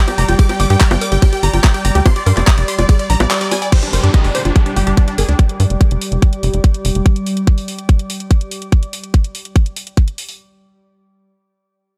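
This alien, hypnotic psychedelic trance excerpt at 144 BPM, tuned to A4 = 436 Hz, opens mid-drop on a G5 chord. A detuned supersaw stab carries the melody through phaser and dub echo, while a woody, wave-folded pluck riff, a resonant drone of moving overtones and a soft, breathy pad sit behind it, all four pumping against the sidechain. An overdriven, up-front electronic kick and a layered garage kit of bongos, handclaps, hi-hat, ride and crash drive the track alongside a dark, punchy ring-modulated sequencer bass. After a band accent at 3.3 seconds, a downlifter enters at 3.7 seconds, the stab and pluck drop out at 5.3 seconds, and the drums carry on to the end in a dry mix.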